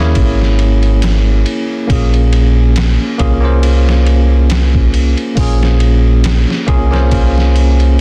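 A swung 69 BPM trip hop groove in 4/4 comes from a compressed, pitched-down sampler-style drum kit that enters at 0.2 s, its thumpy kick, medium-tuned snare, hi-hat and ride re-recorded in a small room. Beneath it, a dark, round fingered electric bass sits up front as the loudest part, while a bell-like, clean tine electric piano moves from Dbm6 to Bbm7 at 1.9 s in Bb minor, colored by harmonic tremolo, 12-bit sampler grit, a low-pass filter and tape echo. The mood is brooding and cinematic, with a dry, dense, heavily limited master on this short passage cut from a longer piece.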